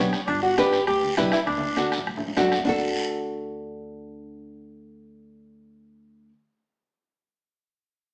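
A brisk, straight four-beat cumbia groove drives this short, sunny and festive fragment cut from a longer piece. A tight, dark saxophone section sits up front with a light vibrato and a jazz-style phrasing, carrying the melody until 1.9 seconds. Beside it, a fingerpicked nylon-string guitar with a small, warm tone supplies the accompaniment, while a woody pizzicato upright bass anchors the low end under the move from G to D. In the background, a softly struck, close and dry bombo, a raspy guiro and low-tuned congas played with soft hands keep the dance pulse, with a drum fill from 1.5 seconds before the percussion drops out at 2.7 seconds. The band sounds as if it is playing live in one room, bathed in a lush studio reverb yet heard through a small speaker.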